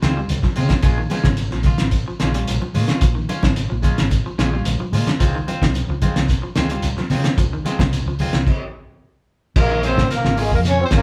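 Afrobeat cut from a longer piece, intense and hypnotic at 110 BPM in Bb dorian, with a band playing live in one room: a muffled, cloth-damped drum kit with a fat snare sits up front over a round, punchy hollow-body bass, while two slightly broken-up, twangy electric guitars play, one arpeggios and the other stabs, and a grainy shekere and soft-handed congas sit in the background. The groove moves between Dbmaj7 and Bbm7, and the congas stop at 8.3 seconds, with a break from 8.5 to 9.6 seconds. At 9.6 seconds a plunger-muted trombone with a wah-wah tone takes the melody, backed by a breathy, raspy tenor saxophone line.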